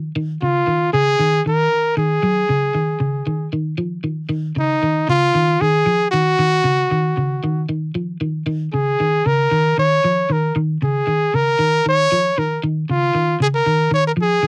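Funky and intense, this afrobeat excerpt moves in a straight 4/4 groove, with a clear, punchy trumpet carrying the melody up front from 0.4 seconds, its light vibrato and close-miked pop-style solo voice sitting over chords of Bbm7, Absus4 and Dbsus2. From the opening moment an electric guitar at the edge of break-up picks warm, slightly broken-up arpeggios, colored by phaser and tape echo and also placed up front. The sound is dry and close in the manner of a 1970s studio, with a moderate booth ambience around the players.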